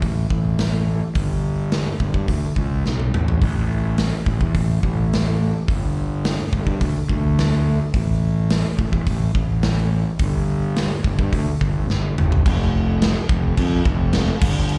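A growly, fuzz-drenched fingered electric bass anchors this cut from a longer quiet-loud alternative rock piece, its overdriven, amped tone sitting up front as it ranges from F1 to G2. Beside it, a big acoustic rock kit drives a straight 4/4 at 106 BPM in A mixolydian, with a punchy kick, a medium-tuned snare, toms, hi-hat and bright crash cymbals ringing through a natural big-room sound. The mood is restless and cathartic, with both parts playing throughout the roughly 15 seconds. Drum fills arrive at 2.9 and 11.9 seconds, and the second one leads into a new section at 12.5 seconds. The recording captures a live gig heard through the venue's PA, carrying a touch of club ambience.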